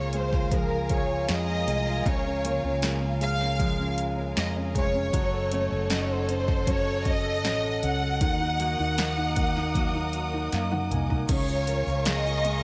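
Pop ballad at 78 BPM in D-flat major, hopeful and tender, where a lush, up-front violin section carries the melody through a digital delay over polished grand piano, a smooth-topped string section holding sustained chords, very quiet full-bodied steel-string guitar arpeggios, a round, dark fretless bass and an electronic drum kit with a deep kick and punchy snare, before piano and drum fills around 10.1 seconds lead into a new section at 11.3 seconds, where a grainy egg shaker joins in the background.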